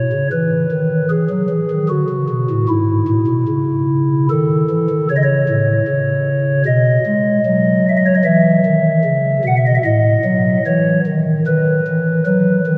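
A wet cathedral reverb with a 4.5-second decay surrounds this short fragment of a classical chorale-style piece for pipe organ. The organ's stopped flute plays solo throughout its 12.8 seconds, sitting up front in the sound, soft and hollow, with a mellow baroque voicing drawn from its flute stops. The mood is serene and majestic. The timing is flexible and rubato in a four-beat metre, and the harmony moves unhurriedly through a chain of chords, landing on the home chord near 8.2 seconds before leaning onward. The organ's span reaches from G#2 up to F#5, and the resonant space lets each sustained sonority bloom and linger between changes.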